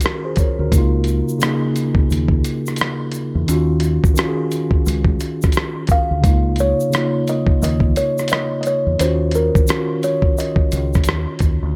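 Lo-fi hip hop in Eb minor at 87 BPM, this reflective, hazy excerpt moves with a 60% swing on the sixteenths in 4/4. A mellow tine electric piano sits up front, its clean tone softened by cassette tape character and a low-pass filter as it alternates between Ebm9 and Db69 chords. The dusty sampler-style drum kit carries gritty 12-bit texture, with a thumpy kick, hi-hat and rim click, compressed and re-recorded in a large room. A deep, round fingered electric bass enters at 0.6 seconds with a dark, punchy tone, while a grainy tube shaker stays close but in the background. At 5.9 seconds a kalimba adds a short, woody melody, its thumb-plucked notes smoothed by a low-pass filter, and the whole piece carries little reverb.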